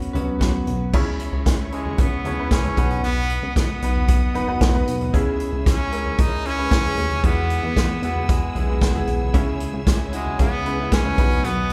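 Hopeful and warm, this piano-driven pop excerpt moves at 114 BPM in a straight 4/4, cut from a longer piece. A bright, woody upright piano carries the accompaniment with long sustain, while a plucky analog bass with a fast attack and mellow decay anchors the low end, and an acoustic drum kit played with bundle sticks sits up front with a punchy kick, medium-tuned snare and dark cymbals. At 1.7 seconds a bright trumpet takes the melody in a pop style, its light vibrato heard at a roomy distance. Behind it, a lush bowed string section holds smooth, sustained chords, and a clean, direct-recorded electric guitar picks a scooped, compressed riff in the background at the opening and again from 9.3 seconds. The harmony moves from F#sus4 through C#m, B and Eadd9, and a moderate recital-hall reverb lends the whole recording an airy, concert-space glow.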